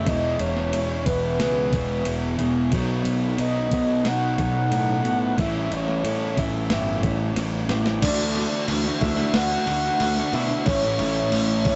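Heard through a rough rehearsal-room recording with tube saturation, a dulled top end and a wet studio reverb, this hazy, dreamy shoegaze and dream pop fragment is cut from a longer rock piece in a straight 4/4. A full, round synth lead layered with a sub octave carries the melody throughout, its triangle and sine tones sustained with a fast attack and coloured by chorus and vibrato. Beneath it, a thick, dark fuzz guitar and a raw, overdriven garage guitar play riffs in the background, while a very quiet, slightly broken-up electric guitar plays fingered arpeggios. A bright, growly fuzz bass, punchy and amped, anchors the low end, and a clean 12-bit drum machine adds a sampler-style beat with a thumpy kick, medium-tuned snare, ride and crash. The harmony moves from E through B and A7, and a drum fill at 7.4 seconds leads into a new section at 8.0 seconds on Dadd9 before arriving on A.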